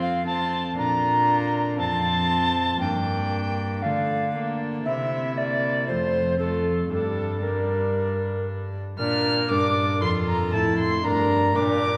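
A tenor recorder carries the melody up front, its pure, woody tone marked by chiff on tongued notes and by vibrato, in this courtly, solemn renaissance-style consort dance excerpt in G dorian, moving at 117 BPM in a straight 4/4. Alongside it, a dark, nasal violin plays a distant second line. A single viola with light vibrato, a reedy cello on the bass, both in period gut-string style, and a ringing, fingerpicked concert harp fill out the accompaniment. The consort sits in a wet recital hall, heard from further back in the room, with a 1.6-second reverb tail.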